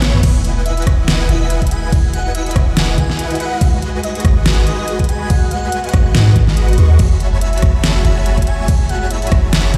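Future bass in E major at 142 BPM with a swung, half-time feel, this bright, euphoric excerpt opens on a break and drum fill as huge, detuned supersaw chords riff through Emaj9, G#m7 and F#m11 over a deep, boomy 808-style bass, a knocking, overdriven electronic kick up front from 0.2 s, an overdriven pop kit with a deep snare, crash, hi-hat, rim click and toms, a shimmering, ethereal pad in the background, and an airy, dreamy lead with vibrato and portamento entering at 0.7 s, all bathed in large studio reverb with sidechain pumping on the bass, chords, pad and lead.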